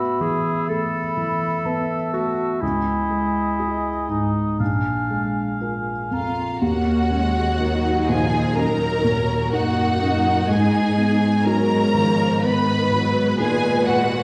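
Cinematic, emotional film score for orchestra, moving and longing in mood, unfolding at a rubato 62 BPM in 4/4 and settling into Eb minor from 6.6 s. A felt-muted upright piano carries the accompaniment throughout, soft, dark and intimate, with thick felt and audible action noise placed up front. In the opening seconds, a bright clarinet, a mellow cor anglais with light vibrato and a pure, hollow concert flute with lifted highs play second lines over chords of Asus2, C#madd9 and A#7. At 6.1 s the violin sections enter, one singing the lush, bowed melody high above while another plays a second line beneath, soon joined by a focused viola section and a rich cello section on the bass as the harmony turns to Ebm7 and then Abm. The whole passage sits in a recital hall reverb, heard from further back in the room, and this clip is cut from a longer piece.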